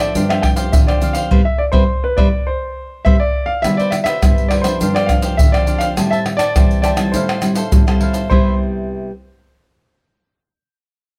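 A straight 4/4 samba-and-choro groove at 103 BPM, driven by egg shaker, pandeiro, tamborim and a deep surdo sitting up front in a small room, carries this festive, sunny C major excerpt, where a warm baby grand piano with short sustain and plate reverb sings the melody, a crisp picked cavaquinho and a full-bodied fingerpicked nylon-string guitar fill in chords moving from G7sus4 to Cmaj7, Am7 and Fmaj9/A, and a band accent from 1.3 seconds closes with a drum fill between 2.9 and 3.6 seconds.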